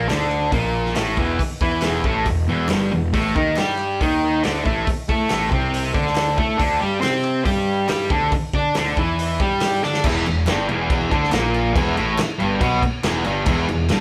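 Raw and gritty, this garage rock excerpt drives at 139 BPM in E minor, with a double-tracked, up-front fuzz guitar riff leading over a growly overdriven picked bass, a punchy vintage drum kit with dark cymbals and a drum fill at 9.8 seconds, and very quiet crisp group handclaps, all captured as a band playing live in one large studio room as the chords move from Em through Cm69/A and D9sus4 before returning to Em at 10.0 seconds.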